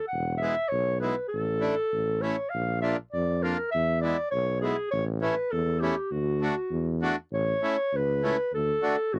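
A dark clarinet opens this short, jolly alpine folk dance at 0.0 seconds, carrying the melody with a distant, roomy, classical-style tone, and a warm, present tuba joins almost at once on the bass line. A reedy accordion enters at 0.4 seconds with mid-forward accompaniment, and all three parts sit up front. The festive dance-band feel moves in 2/4 at around 100 BPM, though the timing stays loose and rubato. The harmony moves through E, A and a brief Bb before reaching D. At 7.3 seconds a second section begins, settling between A and D. The sound is dry and close, in a 1970s-style studio manner with little reverb, and the clip is cut from a longer piece.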